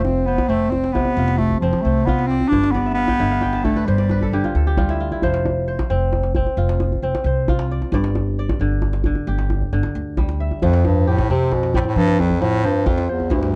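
Hypnotic and flowing, this short cut from a longer West African traditional piece moves at 89 beats per minute in a straight 12/8, centered on F lydian. A clear, soft-attacked bass clarinet carries the melody up front in a classical solo style, sounding from the start until 4.5 seconds and returning at 10.6 seconds for the closing stretch. Alongside it, the kora spins ringing, crisp fingerpicked arpeggios throughout, stepping forward with a fill between 2.7 and 5.2 seconds. A woody pizzicato upright bass with steel strings anchors the low end, while a tight, cracking djembe played with soft hands adds a small-room pulse. The harmony circles between F and G chords, and the dark production keeps reverb to a minimum, so every part sits close and dry.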